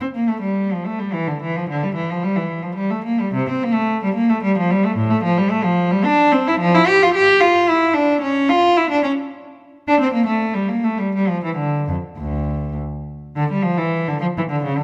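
A single cello sits up front in a moderate recital-hall reverb, its gut-string tone rich and reedy in a period style. This serene, radiant fragment of a baroque-style suite movement for unaccompanied cello moves in a flexible, rubato triple metre. The bowed line ranges from D2 to G4, and a new section begins at 13.4 seconds, shortly before the cut at 14.8 seconds.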